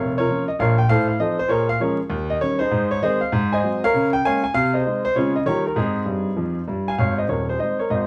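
Playful and exuberant, this short cut from a longer stride piano piece swings at 197 BPM in Ab major, tuned to A4 = 436 Hz, with a solo grand piano that sounds intimate, boxy and up front, with audible action noise and long sustain, ranging from deep bass to bright treble and tossing off a fill at 6.1 seconds before restarting the tune, all set in a moderate studio reverb of a live room under a layer of vinyl crackle.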